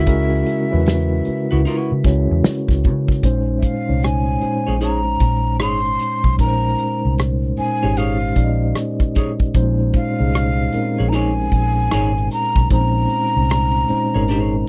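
A relaxed 76 BPM groove in 4/4 swings its sixteenths gently, carried by an acoustic drum kit played up front with bundle sticks, mixing hi-hat, tight kick, rim click and a medium-tuned snare in a small room. This soulful, smooth neo-soul and R&B cut, taken from a longer piece, rests on a dark, round, foam-muted fingered electric bass that sounds punchy and amped. A mellow, clean tine electric piano, heard up front through its built-in speakers, supplies the accompaniment, moving from a Dbm11 chord to Bbm11 at 3.2 seconds. Over it, a breathy metal flute with a straight tone, soft attack and lifted highs sings an expressive melody high in its range, touched with slapback echo, while a clean, picked hollow-body jazz guitar adds a warm second line beneath it. The dry, close sound recalls a 1970s studio with little reverb.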